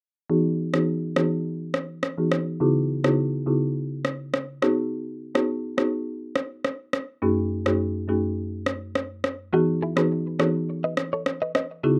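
A straight 4/4 afrobeats pulse at 104 BPM is marked by an overdriven electronic rim click, gritty and up front, that runs from 0.7 to 11.7 seconds. A dry, woody folk marimba played with medium mallets carries the accompaniment throughout, its rustic hardwood tone softened by a low-pass filter as it moves through Emaj9, C#m11, G#m7 and F#m69 before returning to Emaj9. A filter sweep runs across the whole passage, adding to the hypnotic, sultry mood. At 9.5 seconds a bright, clean electric guitar, recorded direct and compressed, enters with a picked riff, filtered and trailed by a digital delay. The sound is close and dry, with the feel of a rough home demo cut from a longer piece.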